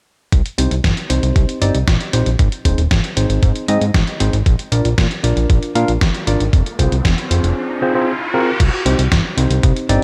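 A thick, detuned analog bass sits up front with a saturated filter pluck in this danceable, nostalgic italo disco excerpt at 116 BPM in C minor, driven by a thumpy electronic kick and a gritty sampler-style soul kit with a fat snare, hi-hat and crash in gated reverb, while worn, slightly out-of-tune tine electric piano stabs enter at 0.6 seconds through a lightly overdriven combo amp, and an electronic riser sounds from 6.2 to 8.6 seconds over a Cm, Ab, Bb, Fm progression before the return to Cm.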